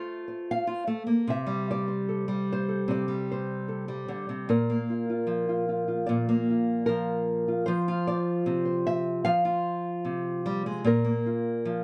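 Close, detailed microphones and a light reverb give this short folk recording an intimate, up-front sound, capturing even the faint squeak of fingers on the strings. A solo nylon-string guitar carries everything, its small, acoustic tone warm and thumb-plucked, spanning from Bb2 up to F5. The mood is hopeful and pastoral, moving in a straight, unhurried 4/4. An opening passage rests on F/A before touching C5, and at 4.5 s a second passage begins on Bb, later reaching F5 and then Bb5 near 10.8 s. Cut from a longer piece, the fragment feels like a gentle glimpse into a quiet fingerstyle meditation.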